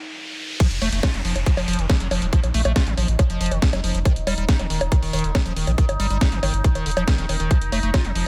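Driving and alien, this psychedelic trance excerpt at 139 BPM opens with an overtone-sweeping sawtooth drone holding Eb chords under a brief electronic riser, then drops at 0.6 s into a tight, up-front layered kick, a techno kit with cracking snare, bongos, crash and hi-hats re-recorded in a large room, a deep, nasal analog bass, and a squelchy, resonant square-wave acid riff with tape echo, the drone and acid line both pumping against the kick in a dry, dense mix.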